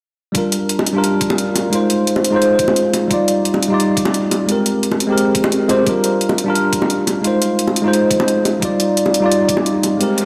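At 174 BPM in a straight 4/4, an overdriven, knocking electronic kick and a gritty, pitched-up sampler-style hi-hat drive this uplifting liquid drum and bass excerpt, joined at 0.8 seconds by tight, high-tuned bongos, while an up-front, clean tine electric piano with subtle chorus and tape echo moves through Gm7, Fm7, Ebmaj9 and Abmaj9 in a dreamy mix soaked in lush hall reverb, until a faint electronic noise sweep appears in the background at 10.1 seconds.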